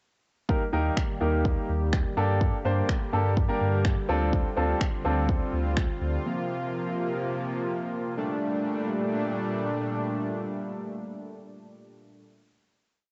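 A confident, bittersweet dance-pop piece in G minor at 125 BPM opens at 0.5 s with a punchy, overdriven four-on-the-floor kick and finger snaps, syncopated close-voiced grand piano chords and a smooth, detuned supersaw pad, with the piano and pad pumping under sidechain, while a round sine sub bass playing off-beat notes joins at 0.7 s; the drums, piano and bass soon fall away, leaving the supersaw to hold a final Gmadd9 chord until 12.2 s, all heard through light reverb and the muffled top end of a home cassette recording.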